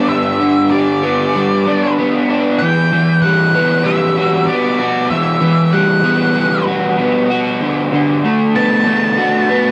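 Rock at 96 BPM with a dreamy, wistful mood, drawn from a longer piece and recorded at home on cassette in a small room, where an up-front, double-tracked garage guitar plays a raw, overdriven picked riff with subtle chorus over G, Emadd9 and D6 while a dark octave-fuzz lead guitar carries the melody through analog delay and tape grit.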